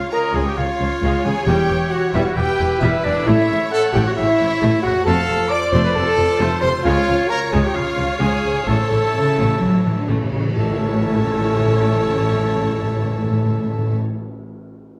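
A moderate scoring-stage reverb gives this soaring, triumphant excerpt of a heroic adventure film score its sense of space, with a mellow French horn section holding sustained chords while a close, expressive violin section carries the melody over a dark cello section and woody double basses. A bright, present oboe, an airy metal-toned flute and a distant, intense second violin section add second lines, as a smooth viola section accompanies, a very quiet concert harp rings out fingerpicked arpeggios and a punchy, roomy trumpet adds stabs. A faint cymbal swell and tam-tam come in at 6.9 seconds, and hard-mallet timpani enter at 8.7 seconds with a fill that leads into a full-band accent at 10.6 seconds.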